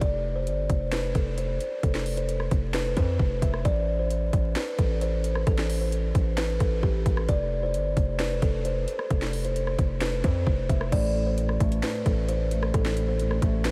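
A woody, fingertip-plucked kalimba melody carries this melancholic, menacing half-time trap excerpt from its first moment, its soft, ringing tone dulled by a low-pass filter and trailed by a diffuse ambient delay. Beneath it, a heavy, aggressive 808-style bass with a fast attack, a noise layer and a decaying tail sits up front alongside the trap drum kit. The kit brings a hard-clipped kick, a sharp snare, metallic hi-hats, rim clicks, finger snaps and crash cymbal, all with a produced electronic punch. The harmony moves slowly between F power chords and A minor, and at 10.9 s a dark, boxy concert grand piano enters low in the mix, filtered and mellow with a deep bass register. The whole mix is dreamy and soaked in a huge ambient reverb, with vinyl crackle lending a worn, hazy surface.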